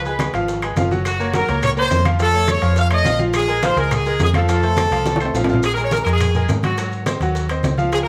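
A wet, roomy live-band sound frames this fiery, danceable salsa at 210 BPM in Bb minor, where a brilliant, smooth-topped horn section carries the melody up front over a bright, polished grand piano and a dark, round hollow-body electric bass, while warm low congas, ringing timbales, grainy maracas, tight distant bongos and woody claves that drop out at 5.3 seconds churn beneath, as chords move from Db7 through Gbmaj7#11 and Faug7 to Bbm7 and F before a drum fill at 5.1 seconds leads into a new section on Bb5 and Ab7.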